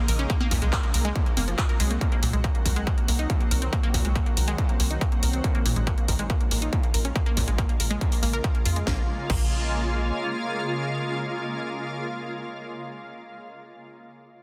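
A distorted, overdriven electronic kick sits up front in this driving, bittersweet uplifting trance excerpt, layered with a techno kit of cracking snare, handclaps, hi-hat, congas and crash cymbal in a small room. Beneath it, a tight, wave-folded sawtooth sequencer bass pumps against the kick while a bright, detuned unison pluck spins phased, delayed arpeggios over Cdim and Bbm7 chords. A shimmering, ethereal pad with granular octave-up sparkle and chorus holds sustained chords throughout and carries on by itself after the bass drops out at 10.1 seconds, finishing the dense, heavily limited mix at 13.0 seconds.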